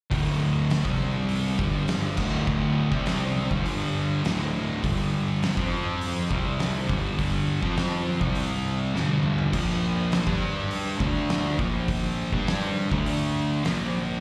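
Heard live through a club PA with a touch of room reverb, this ominous, brooding stoner and doom metal excerpt is built on one steady riff cycling through power chords. Two thick fuzz guitars carry it: one dark and up front, the other warm and set back with a slapback echo. A warm overdriven picked bass sits underneath them, while an oversized low-tuned drum kit with a punchy kick, fat snare and dark cymbals pounds up front and breaks into a fill at 9.0 seconds.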